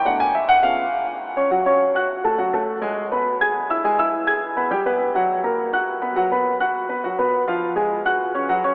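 A dark baby grand piano carries this short jazz piece alone from 0.0 to 8.7 seconds, its mellow, natural tone sitting up front with a short sustain and ranging from B2 to G#6. The music is sophisticated and driving, moving at a brisk 206 BPM in a straight 4/4 feel in F# minor, tuned to A4 = 441 Hz. An opening passage over Bm7 and C#7 gives way at 1.2 seconds to a longer stretch that lands on F#m and travels through F#madd9, G#m, E/G#, Gmaj7, F#, B5 and Fm before settling on F#5. The piano is bathed in a wet cathedral reverb with a 7.2-second decay, placing it in a vast, echoing space. A narrow, telephone-like filtering gives the recording a distant, boxy character. It is cut from a longer piece.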